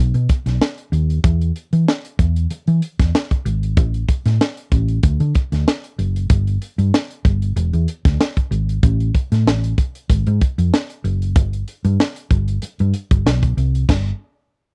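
A lightly swung sixteenth-note groove at 95 BPM in 4/4 drives this breezy, upbeat slice of polished 1980s jazz-funk pop, cut from a longer piece. A tight funk drum kit, acoustic and mid-forward in a small room, sits up front with a high-tuned snare, a punchy kick, hi-hat and crash cymbal, entering at 0.1 seconds. A hollow-body short-scale fingered electric bass starts at 0.0 seconds, also up front, its amped tone dark and round as it ranges from E1 to E3. The sound is dry and close, in the manner of a 1970s-style studio recording with little reverb. The two parts play through to 14.1 seconds, and a band accent lands at 13.9 seconds to close the passage.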